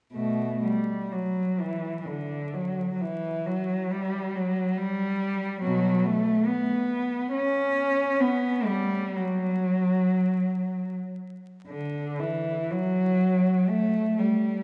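A haze of vinyl crackle and a wet church reverb with a long 2.5-second decay surround this short excerpt of classical music for unaccompanied cello. A single bowed cello carries the whole piece alone from 0.1 to 14.6 seconds, its tone warm and up front yet touched with a distant quality, colored by vibrato and portamento. The mood is mournful and yearning, and the playing is free and expressive, moving in 3/4 with a rubato feel that lets the tempo drift between 32 and 71 BPM. The line spans a range from B2 to C#4. A new section begins at 11.7 seconds and runs until the fragment is cut off.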